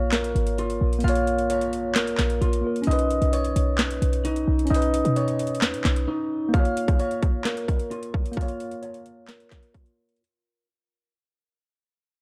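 Trap hip hop at 131 BPM in a half-time feel, menacing and melancholic in Bb phrygian, where a mellow tine electric piano and a slightly broken-up electric guitar playing delayed arpeggios sit under low-pass filters above a punchy, tight 808-style bass and an overdriven trap kit of hard-clipped kick, sharp snare, metallic hats and handclaps, moving from Bbm to Badd9 before the bass stops at 6.1 seconds and a filter sweep and fade-out carry the dark, dry production from 6.5 seconds.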